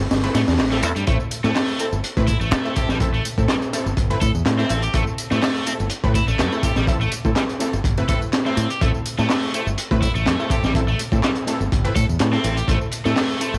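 A gritty, up-front breakbeat kit with a punchy kick and high-tuned snare drives this funky, energetic breakbeat excerpt at 124 BPM with a light 16th-note swing, holding on A minor throughout. A bright fingered electric bass sits forward beside it, while a quieter, layered electronic garage kit adds handclaps, ride cymbal and tambourine, an overdriven, tube-saturated guitar plays a picked riff from 0.3 seconds, and a detuned sawtooth orchestra-hit-like synth stab punches through from the very start with built-in reverb and tape echo. The home cassette recording carries a small-room ambience with light reverb.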